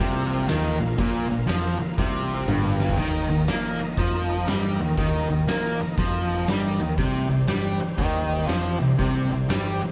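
Recorded live in one room with moderate studio reverb, this short excerpt of blues rock power trio and southern rock is cut from a longer piece. The mood is gritty and brooding, moving at 120 BPM in 4/4 with a light swing on the eighth notes, as the harmony passes from Bb5 to Eb5 and then C5. Up front, a double-tracked, compressed fuzz guitar plays a bright, picked, distorted riff, joined by a fingered electric bass whose overdriven fuzz tone growls. An oversized, low-tuned acoustic drum kit enters at 0.3 seconds, its fat snare, punchy kick, dark cymbals, hi-hat and toms pumping in a stone room, and it plays a fill from 2.5 to 3.0 seconds. In the background, an overdriven tonewheel organ holds thick sustained chords through a slow rotary speaker with chorus vibrato.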